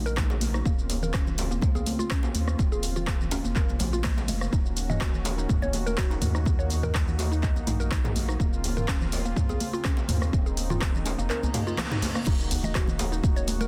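A driving afro house groove at 124 BPM in 4/4 carries a gentle 54% swing on the sixteenths, anchored by a deep, up-front electronic kick and a layered deep house kit of handclaps, hi-hat, rim click, shaker, toms and crash cymbal, re-recorded in a small room. Bright, high-tuned congas played with soft hands and a deep djembe struck with hard hands sit in the background, adding an earthy acoustic pulse. In Eb dorian, a round, dark analog bass holds the low end, while a smooth, detuned sawtooth pad sustains chords between Ebm7 and Bbmadd9/Eb, both pumping against the kick through sidechain. Over this, a woody, mallet-like FM pluck spins mellow arpeggios treated with chorus, phaser and dub echo, giving the spiritual mood a hypnotic shimmer. A reverse cymbal rises from 11.5 seconds, passing a band accent at 11.8 seconds, until the drop lands at 12.3 seconds, returning to Ebm7 in this dense, heavily limited excerpt with light reverb.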